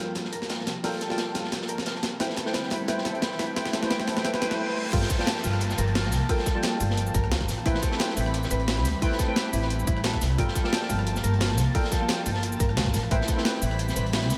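A woody, dark pizzicato upright bass sits up front in this dreamy, rolling liquid drum and bass excerpt at 176 BPM in G dorian, moving between Gm9 and Am9 under soft, detuned chord stabs colored by chorus, cassette tape and delay, a breathy pad pumping in the background, and a clean, fingered electric guitar playing filtered arpeggios. Two gritty breakbeat kits, one overdriven and sampler-style with crash, rim click and shaker, the other a saturated acoustic kit with a rolled-off top, play a drum fill through the build-up while filter sweeps move over the pad and guitar, joined by a riser, reverse cymbal and downlifter from 2.4 s. At 4.9 s the drop lands with a tight, tape-warm electronic kick, the whole mix soaked in a huge ambient reverb.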